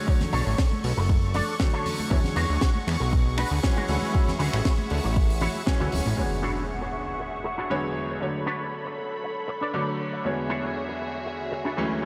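A punchy, layered electronic kick sits up front beside a fat, detuned sawtooth bass in this sunny, feel-good nu-disco excerpt at 118 BPM in E mixolydian, joined by a dry funk kit with a high-tuned snare, hi-hat and finger snaps, plus bright, hard-handed congas in the background. A dark, clean envelope-filtered guitar riff with chorus and delay runs throughout over a worn, short-sustain grand piano with 12-bit grit and a lush, vibrato-rich string section, both pumping against the beat. Around the 6-second mark the drums, congas and bass drop away, and at 6.2 s an electronic impact hits, leaving guitar, piano and strings floating in a dreamy, reverb-soaked mix over chords such as Bm9, E13 and Dmaj9#11.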